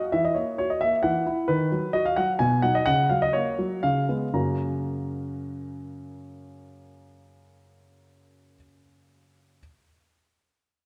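In a straight three-beat metre, this cheerful, graceful classical-period piano sonatina passage features a solo concert grand piano with a warm, up-front tone, deep bass and short sustain. The pace slows from about 0.8 to 4.3 seconds, where the phrase settles onto its home chord before a new section begins. A wet recital hall reverb surrounds the piano in this short cut from a longer piece.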